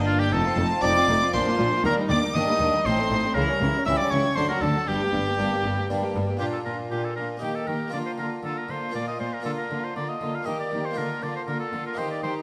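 Driving and stormy, this baroque-style concerto movement in 3/4 at 118 BPM moves from G minor into Bb major at 6.4 seconds. A bright, up-front solo oboe with a soft attack shares the melody with warm first violins up high, over period-style gut-string sections: rich second violins in the background, nasal violas, warm cellos and a rich double bass section that drops out at 6.2 seconds, all framed by an airy, plucked harpsichord. The excerpt, cut from a longer piece, sits in a wet recital hall reverb.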